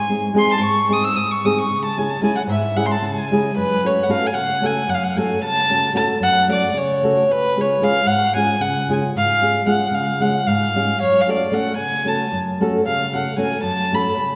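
Balkan folk in a lopsided 7/8 metre, this fiery, restless piece is cut from a longer work and carries a straight feel. A dark violin carries the melody, its bowed gut-string tone nasal and reedy with a smooth top, played by one musician in a period style and placed up front. A thumb-plucked nylon-string guitar provides classical-style accompaniment beneath it, sounding acoustic and warm with fresh strings, and it also sits close to the listener. The violin takes a solo passage over the opening 3.6 seconds before the music shifts into a new section, where the harmony settles on a minor chord, moves to a major one at 7.3 seconds, and returns to the minor chord at 11.0 seconds. Both instruments ring out in a church or concert hall with a generous, lingering reverb that lends the intimate duo a sense of space.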